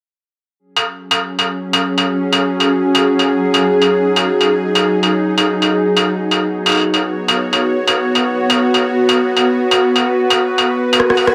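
A tense, string-like drone, built from sawtooth and triangle layers with a noise layer, ring modulation and vibrato, sits up front in this heavy, spacious cut from a longer half-time drum and bass piece at 173 BPM, holding sustained chords that move from F#5 to B5 at 6.1 seconds. Electronic struck metal and rim clicks, re-recorded in a small room and placed up front, drive the swung half-time groove from 0.8 seconds, closing with a drum fill. A brief electronic swell rises in the background at 11.1 seconds, and a plate reverb gives the echo-heavy mix its spacious depth.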